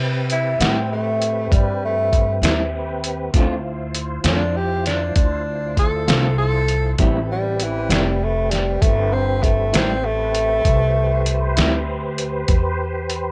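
Set in a slow 12/8 at 66 BPM, this mournful, smoky minor-key blues excerpt features a mellow, distant tenor saxophone soloing over sustained tonewheel organ chords with slow rotary speaker and chorus vibrato, woody pizzicato upright bass, a slightly broken-up electric guitar with tremolo, and a muffled, overdriven sampler-style drum kit with a thumpy kick and fat snare, all bathed in spring reverb and dulled home cassette sound as the harmony moves from Am7 to Dm7 at 3.3 seconds and back at 7.0 seconds.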